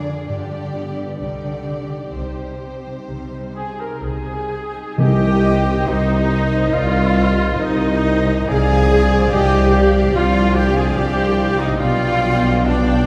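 Solemn and melancholic, this slow romantic orchestral movement in C minor moves at around 61-74 BPM with a flexible, rubato feel, and it is cut from a longer piece. From the start, a dark, woody violin section carries the melody while a second violin section adds a focused, smooth-topped counterline. Beneath them, a rich viola section, soft-attacked cellos with portamento and a close, dark double bass section all play with vibrato, joined by a ringing fingerpicked harp. At 3.6 s an airy silver flute, a cor anglais, a very quiet horn section holding sustained chords, and trumpet stabs join. At 5.0 s a hushed clarinet, a mellow bassoon and a vintage-toned tuba enter, and timpani struck with hard mallets sound briefly until 6.3 s. The harmony moves from G7 to C minor and later through Dm7b5/C to G7/B, all set in a reverberant scoring-stage space heard from further back in the room.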